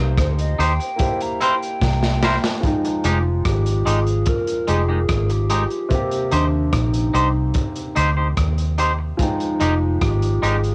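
A lo-fi home cassette recording with light reverb carries this bittersweet, longing lovers rock reggae excerpt in F minor at 73 BPM, where a dark, round muted bass sits up front under a crunchy, gritty breakbeat kit with analog delay, twangy clean guitar stabs, and a clear grand piano, while a reedy, woody FM lead with chorus, vibrato and tape echo carries the melody, opening with a soft synth solo capped by a drum fill before the second section arrives at 2.6 seconds over Eb6 and Fm9 chords.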